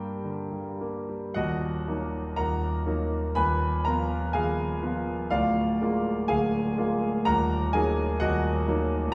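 A clear concert grand piano opens on a G minor chord, quickly settling into E-flat minor at 1.4 seconds in this brief fragment of a longer romantic character piece for solo piano. The mood is bittersweet and brooding, moving in a slow, rubato 2/4 that drifts between 53 and 66 BPM. The piano spans a broad range from D1 up to C-flat 6, its deep bass giving weight beneath an open, clear upper register. The harmony darkens through a half-diminished chord over an E-flat bass and a B-flat seventh over D before returning to E-flat minor at 7.3 seconds. A wet recital hall reverb surrounds the instrument, and the listener seems placed further back in the room, lending the playing a reflective distance.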